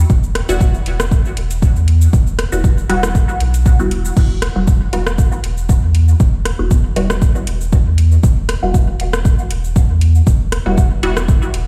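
Dub techno in E minor at 118 BPM with a light 16th-note swing, this nocturnal, deep cut from a longer piece sets a round, soft sub bass with sidechain pumping under an up-front, overdriven electronic kick, while a deep house kit of metallic hi-hats, cabasa, rim click and crash, overdriven and trailing dub echo, plays alongside muted, detuned chord stabs on an Emadd9 that carry a resonant filter pluck, phaser, dub echo and pumping, all heard as if played on a big sound system in a bare stone room.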